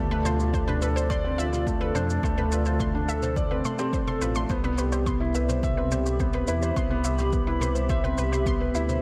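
Luminous and hopeful, this piano and strings electronica piece moves at 106 BPM in a straight 4/4 in C major, cut from a longer work and resting on a Dm7 that gives way to Cmaj7 at 4.5 seconds. Up front, a felt-muted upright piano plays a soft, intimate riff with audible action noise, its notes trailed by delay. Beneath it, a dark detuned saw bass rumbles with a deep, beating tone and pumps to the sidechain, while a granular cloud pad sits in the background holding blurred, evolving chords through its own built-in reverb and the same pumping. An analog pluck adds bright, round arpeggios with a short decay, colored by chorus and delay and breathing with the sidechain. The drums pair a punchy, overdriven electronic kick from 0.5 seconds with distant, roomy toms and shaker played with brushes, their top end rolled off, all set in a light small-room ambience.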